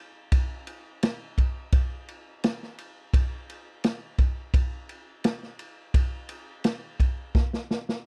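Rock drums carry this short, swaggering excerpt cut from a longer piece, with a driving, straight feel in 4/4. A vintage acoustic drum kit is the only part, entering at 0.3 seconds and playing through to 8.0 seconds with kick drum, snare and ride cymbal. The kick is punchy, the snare is medium-tuned, and the whole kit sits up front, while its rolled-off top gives it a warm, natural character in a small room. A drum fill arrives at 7.3 seconds and carries through to the end. The sound is dry and close, with little reverb, in the manner of a 1970s studio recording.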